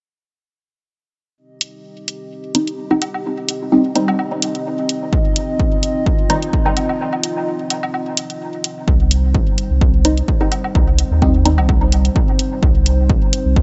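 A dark, softly rounded recording with light reverb and a dulled top end opens this hypnotic, nocturnal slice of dub techno, cut from a longer piece and moving at 128 BPM in 4/4 with a gentle swing in C minor. A moody, detuned analog pad with a ring-modulated edge and slow attack holds a Cm chord under chorus and sidechain pumping, while a dry, up-front hi-hat sits under a low-pass filter. Muted, sawtooth-and-square chord stabs pluck through a phaser and dub echo under a filter sweep, joined by a layered, produced woodblock that also pumps and echoes. A punchy, up-front kick drum arrives at 5.1 seconds, and after a break the second section begins at 8.9 seconds with a round, deep sine sub bass pumping beneath the groove.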